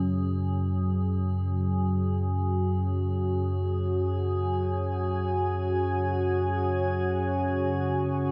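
Dark ambient drone with an unsettling, ominous mood: a rumbling, warbling drone with a vintage character sits up front from 0.0 s beneath a faint, eerie metallic inharmonic drone with a nasal FM edge and chorus, before a moody, detuned ambient pad with chorus enters at 0.8 s holding sustained chords, the three set in a vast, echoing space with huge reverb.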